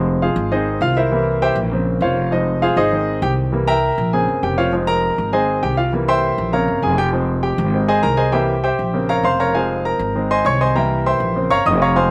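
A clear, polished concert grand piano takes the solo from the first moment in this driving, fiery salsa cut, its short-sustained chords circling through a repeating minor progression, with a slapback echo trailing each attack. Beneath it, a woody, thumpy upright bass plucks dark gut-string notes low in its register, sitting slightly behind the piano while both stay up front. The outdoor recording is dry and immediate, keeping the fiery energy close and present throughout the 12.1 seconds.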